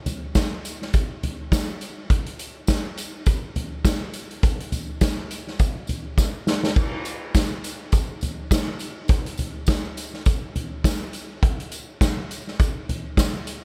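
A soft-mallet drum kit sits up front in this bittersweet, earnest pop passage, its boomy kick, medium-tuned snare, toms, hi-hat and crash all struck with soft mallets for a roomy, rolled-off sound with a gently swung sixteenth-note feel in 4/4. A jingly tambourine, close and dry, stays in the background throughout. The one notable event is a drum fill at 6.2 seconds, and the whole passage carries light studio reverb, cut from a longer piece.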